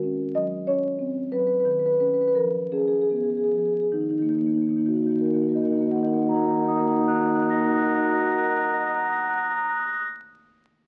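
Through the crackle of a very old 78 rpm record, a solo marimba played with soft mallets opens this reflective, flowing excerpt of contemporary classical music in Eb minor, its woody, round, dark tone sitting up front in a stone room reverb, while the rubato 6/8 pulse of 48-64 BPM slows over the first 3.9 seconds and the harmony moves from Ebm7 through Db9/Eb to settle on Ebm at 3.9 seconds, ranging from Eb3 to Bb6.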